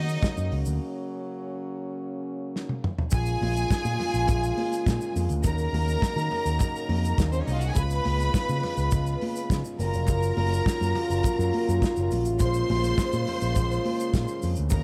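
Set in a small, intimate room, this sultry, danceable disco passage pairs a lush, vibrato-rich studio string section's second line with the mellow, tight sustained chords of a French horn section, the strings sitting close and the horns up front. A bright, amped picked electric bass with an envelope filter leads the low end. A dark, smooth soul drum kit with a punchy kick and gated reverb drives the groove, backed by a grainy, dry tube shaker. After a break from 0.8 seconds and a drum fill at 2.5 seconds, high-tuned vintage congas with a thin skin and hard hands join in the background at 3.1 seconds over minor seventh, dominant and major seventh chords.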